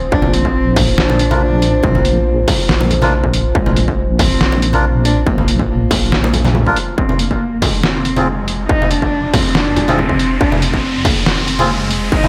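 The recording has a dark, lightly reverberant sound: a cut from a longer deep dubstep piece in F dorian that feels heavy and meditative, moving at 140 BPM in a half-time 4/4 with a slight swing on the sixteenths. A detuned, wave-folded analog pad holds sustained chords above a deep, chorused wobble bass that blends sawtooth and sine tones. A single close, woody cello carries the melody, bowed sul tasto with vibrato and run through a low-pass filter and dub echo. A distorted, layered, tape-warm electronic kick plays alongside a gritty, pitched-down, tape-warm sampler-style kit with hi-hat and a medium-tuned snare that sits up front. They are joined by ringing, distant congas and bongos played with hard hands and sent into dub echo. A reedy, nasal melodica adds stabs through its own echo. From 7.0 seconds the harmony turns to F minor and a build-up begins, with a filter sweep on the cello, an electronic riser entering at 8.4 seconds and a noise sweep at 12.1 seconds.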